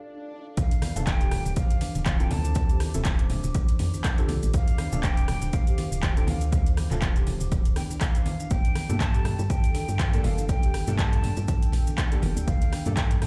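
Heard as if played over a big sound system in a bare room with a large reverb, this earthy afro house cut, swung at 121 BPM in D minor, opens on an electronic swell and a dark, detuned analog pad with chorus, phaser and sidechain pumping before the groove drops at 0.6 seconds. A punchy, overdriven kick sits up front over a woody, round FM bass, with handclaps, metallic hats and rim clicks from the deep house kit, ringing congas and grainy maracas set back in the mix, while soft-mallet marimba arpeggios and mellow, chorused chord stabs from 1.0 seconds pump and echo beneath. A breathy, hollow jazz flute carries a distant melody through dub echo as the chords move from Dm7 to Gmadd9 at 8.5 seconds.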